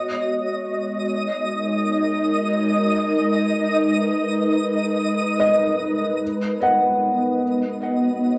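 A small, wet room and the soft grain of a home cassette recording give this short ambient excerpt its close, intimate sound. It moves in free time with a serene, peaceful mood, opening on a sustained G#m7 held by an ethereal pad whose detuned, chorused tone has a slow attack and a long release. Above it, a twinkling granular texture adds sparkling, octave-up shimmer, its FM tone blooming slowly and washed in its own reverb. At 5.4 seconds a felt-muted upright piano enters with quiet arpeggios, dark and mellow, its action noise audible and each note touched by tape echo. The harmony shifts to B at 6.2 seconds, and the pad, shimmer and piano carry on together until the cut.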